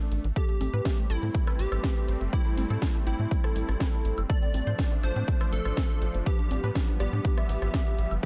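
A tight, punchy sequencer bass anchors this driving, bittersweet progressive house excerpt, its wave-folded, saturated tone sitting up front from 0.1 seconds and pumping against an overdriven, punchy electronic kick that enters at 0.4 seconds. The track moves at 122 BPM in a straight 4/4 in A minor, with the harmony shifting from Am7 to F6/A and then G7/A. A house drum kit with a cracking snare, rim click and pumping hi-hats runs from the start, overdriven and re-recorded in a large room. Congas and woodblock add tape-softened, analog percussion in the background. Above them, a detuned sequenced synth plays chorused, cassette-tinged arpeggios with dub echo, while a lush supersaw pad holds slow-blooming sustained chords. A bright, catchy plucky unison lead carries the melody with vintage 12-bit sampler grit and dub echo, all set in a dark digital ambience.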